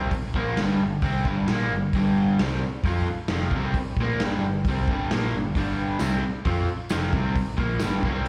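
A straight 4/4 garage rock groove struts with raw swagger in this live club snippet, heard through the venue's PA, as a bright, double-tracked overdriven guitar riff on G5 sits up front with spring reverb and slapback echo over a round, punchy hollow-body bass and a dark, smooth drum kit with a medium-tuned snare and rolled-off top, while a jingly tambourine joins in the background from 6.0 to 7.9 seconds.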